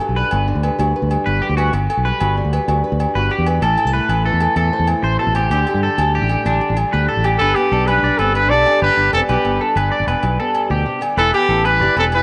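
Moderate plate reverb frames this carefree, danceable highlife guitar band in G major at 127 BPM in a straight 12/8, where fingerpicked flamenco guitar with audible finger squeak, ringing agogo bells, a dark, round fingered electric bass up front and a twangy, slightly broken-up electric guitar playing arpeggios through analog chorus and slapback echo carry the groove from the start; at 7.4 seconds a bright, punchy trumpet joins them to take the melody with vibrato, and a breathy alto saxophone adds a jazz-style second line in the background.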